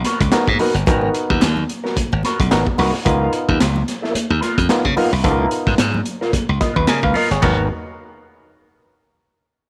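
Funk at 110 BPM with a sly, swung 16th-note feel in G# dorian, built on a glassy, punchy slap bass and a crunchy, gritty breakbeat kit with dark cymbals up front, an overdriven auto-wah clav that stabs and then plays a fill from 6.3 to 7.4 seconds, a mellow, clean guitar with wah and subtle chorus tucked in the background, and very quiet high-tuned congas and crisp vintage handclaps, all over a G#m9 to C#13 vamp in light studio reverb.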